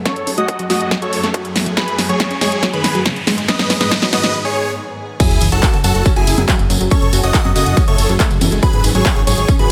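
A driving 4/4 pulse at 140 BPM in F# dorian carries this soaring uplifting trance excerpt: a build-up with a drum fill, riser and filter sweeps on the huge, euphoric supersaw lead, the bright plucky unison lead and the round analog pluck arpeggios, over a shimmering, ethereal pad on F#madd9 and G#m, breaks at 4.3 s and drops at 5.2 s with an impact, where a fat, detuned analog bass and a jingly tambourine join the overdriven, up-front kick and tape-warm analog drum machine, all under light reverb with sidechain pumping and dub echo on the lead.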